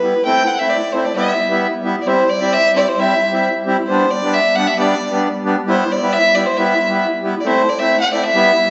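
A single bowed violin and a reedy accordion begin together in this soulful, festive klezmer piece at 134 BPM in a straight 2/4, cut from a longer work. The violin carries the melody up front with an earthy, dark tone, light vibrato and a smooth top, while the accordion, close and boxy, plays accompaniment beneath it. After an opening on A minor and E minor, a new passage begins at 2.1 s, moving through C and G and back to E minor before returning to A minor, all heard from further back in a recital hall with a wet reverb and softened highs.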